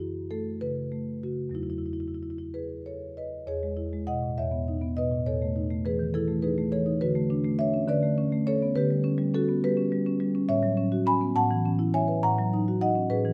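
A solo marimba played with soft mallets carries this short contemporary classical excerpt, its rosewood bars giving a woody, mellow, round tone that sits up front. The mood is reflective and hypnotic, with a lilting 6/8 metre pulled and stretched by free rubato. The instrument covers a broad span from E2 up to B5. The harmony drifts through rich extended chords, opening on F#m7 and Emaj9, shifting into a new section at 3.5 seconds with colours such as C#m9/E and Amaj7#11/E, and settling toward A69 and F#6/A near the end. A moderate recital-hall reverb surrounds the marimba with a gentle sense of space, and the passage is cut from a longer piece, stopping at 13.3 seconds.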